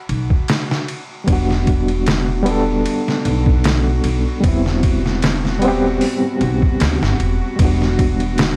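A melancholic, dark trip hop excerpt at 76 BPM in E minor, with a lightly swung sixteenth-note feel. A gritty, pitched-down sampler-style drum kit with a thumpy kick and hi-hat, ride and snare sits up front beside a woody pizzicato upright bass, while a tense, detuned string-like drone with phaser and reverb hovers in the background from the start. At 1.2 seconds an overdriven, reedy electric piano enters through a combo amp with fast tremolo and tape echo, moving through Em7 and Cmaj7#11/E chords under a coat of vinyl crackle in a dry sound.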